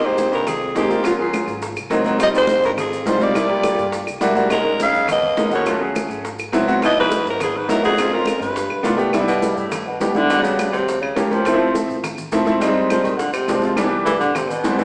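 A wet, roomy sound with a small-speaker quality frames this short cut from a longer piece of sunny, sophisticated Afro-Cuban jazz, played live by the band in one room at a brisk 207 BPM in a straight 4/4. A growling alto saxophone sits up front with the melody, close-miked, raspy and gritty with vibrato, until it stops at 9.0 s. A mellow baritone saxophone in a subtone carries a second line beneath it, its notes scooped with a vintage tone, then takes a solo from 9.1 s as the key shifts from Ab major to C major. A bright, brilliant upright piano, also up front, comps through rich extended jazz chords and adds a brief fill at 4.1 s. In the background, high-tuned congas struck with hard hands, tight compressed bongos, woody claves and a dark, woody pizzicato upright bass keep the groove moving, joined by grainy maracas with a live-room sound.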